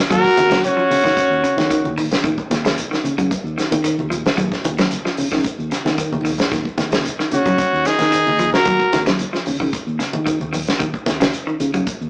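A brilliant, close-miked trumpet carries the melody up front from the very start, with a bright, punchy alto saxophone with light vibrato playing a second line beneath it, both dropping out at 1.9 s and returning at 7.3 s. This funky, defiant afrobeat excerpt moves at 112 BPM in a straight 4/4 over a single Ebm7 chord in E-flat minor. Underneath, a clean, picked electric guitar plays arpeggios through spring reverb, while a dark, round fingered electric bass anchors the low end. A soul drum kit sits up front with a fat snare, tight kick, hi-hat and rolled-off top, and it plays a fill at 6.1 s. Thin-skinned, low-tuned congas ring in the background, and a grainy, mellow shekere adds a very quiet layer of percussion. The whole recording has the rough character of a rehearsal room, with tube saturation, a small-speaker tone and moderate studio reverb.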